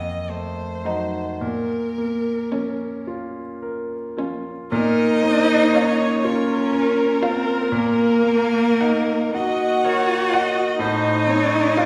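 This is a slow, romantic classical movement for piano quintet in B-flat minor, elegiac and melancholic, moving in a rubato 6/8 at roughly 35-43 dotted-quarter beats per minute in a short passage cut from a longer piece. A brilliant, polished concert grand opens the passage with accompaniment from the very start, its deep bass sitting up front beneath a focused, vibrato-rich solo violin that carries the bowed melody. At about 0.8 s the cello enters with an expressive second line, soft in attack and sliding with portamento, placed close and prominent. The viola fills in an even, smooth accompaniment at the same moment, and a second violin, very quiet and warm, joins at 0.9 s with its own portamento-laden line. The harmony leans from a tense F7b9 into B-flat minor, shifts to E-flat minor over a B-flat bass at 7.7 s, and ends on a rootless F7 over A, all bathed in the resonant reverb of a recital hall.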